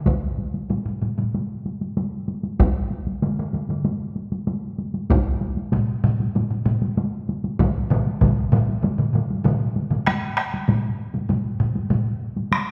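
A reverberant recital-hall ambience surrounds this ceremonial, driving Japanese traditional taiko drum ensemble piece, cut from a longer performance in straight 4/4 at 96 BPM and pushing faster throughout. Two taiko ensemble parts struck with hard sticks sit close, dry and up front. One carries from the opening to 8.4 seconds, while the other strikes briefly near the start and returns at 5.7 seconds. Two solo taiko drum parts, both played with heavy sticks, round out the sound. The first is close and present from the very start, and the second, with a small-room character, joins at 3.2 seconds. At 10.1 seconds the music moves into a new section as the quickening pulse carries the drums to the end of the clip.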